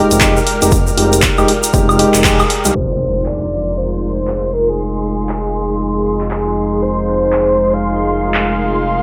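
A swung 4/4 deep house groove from an overdriven analog drum machine of handclaps, hi-hat and woodblock, with a punchy layered kick and a grainy tube shaker, pulses beneath a smooth sawtooth synth bass and a detuned analog pad, a worn, slightly out-of-tune tine electric piano stabbing up front until 2.7 s, a cloudy granular pad and a silky string machine phasing in the background, and a breathy flute-like lead with vibrato and tape echo entering at 2.2 s, while a very quiet electronic impact and a filter sweep mark the change to Fm7 at 2.8 s in a lush late-night hall.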